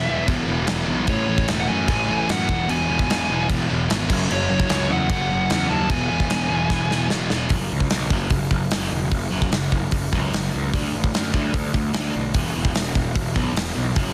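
A straight 4/4 punk rock pulse at 149 BPM drives this urgent, aggressive excerpt in F# minor, with a big acoustic rock drum kit arriving at 0.3 seconds: up front, warm and mid-forward, with a tight kick, a medium-tuned snare, hi-hat and crash, and a rolled-off top that rings in a big room. Underneath, a fuzz-soaked picked electric bass sounds bright and growly beneath power-chord harmony that moves through E5, A, E and F#5. Two picked, overdriven, warm rhythm guitars sit in the background playing riffs: one crunchy, the other sludgy, which drops out at 7.5 seconds after a drum fill. A dark, smooth overdriven lead guitar carries a high melody over the opening until 7.1 seconds. In the second half the bass, drums and crunchy guitar press on over F#5, D5 and E5, and the whole mix is dry, dense and heavily limited, cut from a longer piece.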